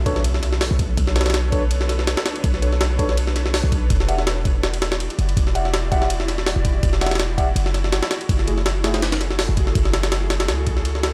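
Raw and dark, this drum and bass cut with a jungle edge runs at 164 BPM in B minor. A compressed, pitched-up sampler-style jungle kit with a thumpy kick and high-tuned snare sits up front beside a deep, boomy 808-style bass, while a mellow tine electric piano places dub-echoed stabs until 9.0 seconds over a cloudy, detuned granular pad drifting in the background. A very quiet electronic impact opens the passage, and the whole has a dry, gritty hardware sound as it moves from Bm9 through Em9 to F#m9.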